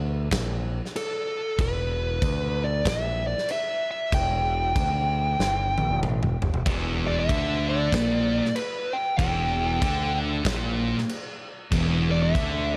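A swung 4/4 groove at 95 BPM drives this sludgy, ominous stretch of stoner and doom metal, cut from a longer piece and centred on E minor. A growling fingered electric bass opens the track, sitting up front with a bright, overdriven tone thickened by tube saturation, and a big acoustic rock kit joins almost at once with a tight kick, medium-tuned snare, toms and crash cymbal, heard in a big room with a rolled-off top. From 1.0 seconds a compressed fuzz lead guitar carries the melody high above, up front and coloured by tape echo. A drum fill at 5.4 seconds leads into the entry of two thick fuzz guitars at 6.7 seconds, one dark and the other warm, both picked and distorted as they pile the riff onto the low end. Light reverb and a small room ambience frame the heavy, smouldering mix.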